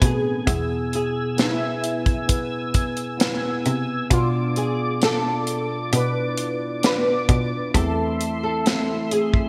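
A heartbroken, longing pop ballad excerpt in a straight 4/4, where a thumb-plucked flamenco guitar carries the melody with audible finger squeak and a shimmer of ensemble chorus, over a mellow, clean tine electric piano sitting up front with a phaser. A lightly overdriven tonewheel organ holds sustained chords through chorus vibrato, key click and a slow rotary speaker, while a smooth, distant bowed cello with vibrato supplies the bass line. A punchy, mid-forward acoustic drum kit with a rolled-off top and gated reverb plays hi-hat, kick and snare, all set in a lush hall of bright 1980s-style digital production as the chords move from E through Bdim to Am/E at 7.7 seconds.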